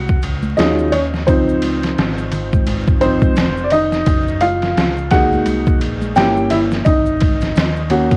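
A woody, slightly detuned upright piano leads this nocturnal, cool jazz-hop excerpt, playing solo throughout with a vintage cassette-tape character over chords moving from Ebm11 through Dbmaj9 and Gb69 to Gdim7 and Ab7sus4. At 86 BPM with a swung 16th-note feel, a gritty, pitched-down sampler-style drum kit sits up front with a thumpy kick, medium-tuned snare, hi-hat and ride, all overdriven and tape-worn. A dark, round fingered electric bass and bright, close maracas and congas tucked in the background complete the mix, wrapped in light reverb and vinyl crackle for a home-cassette feel.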